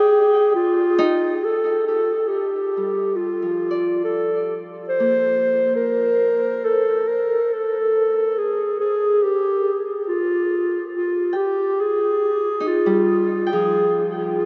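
A straight 4/4 pulse at 69 BPM carries this luminous, weightless ambient passage in Bb mixolydian, where an up-front solo clarinet with a dark, smooth tone sings a classical-style melody between F4 and C5 while a bright, ringing, fingerpicked Celtic harp plays arpeggios from F3 to G5 and fades in from 1.4 to 14.5 seconds, both parts trailing a diffuse ambient delay inside a huge, wet reverb as the chords move from Fm7 to Bbmaj7 at 1.4 seconds and back to Fm7 at 8.4 seconds in this section cut from a longer piece.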